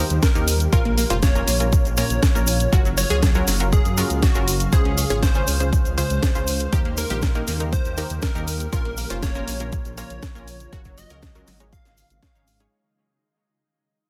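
A deep, tape-warm electronic kick sits up front in this euphoric, expansive progressive house excerpt at 120 BPM in 4/4, cut from a longer piece and set in a drop that begins fading out at 4.7 seconds. Beneath it, a dark detuned saw bass rumbles with sidechain pumping, while a house drum kit adds hi-hat and a cracking, overdriven snare, and a grainy tube shaker sits in the background. A bright, catchy plucky unison lead carries the melody, joined by punchy, wave-folded unison pluck stabs and a lush unison pluck arpeggio that enters at 0.7 seconds. All three plucked parts pump against the kick and trail off in dub echo. A very quiet, shimmering ambient pad holds ethereal sustained chords as the harmony moves through Eb, Bbm, Gbmaj7 and Dbmaj7 before ending on Absus4. Light reverb and digital ambience frame a dense, heavily limited modern master.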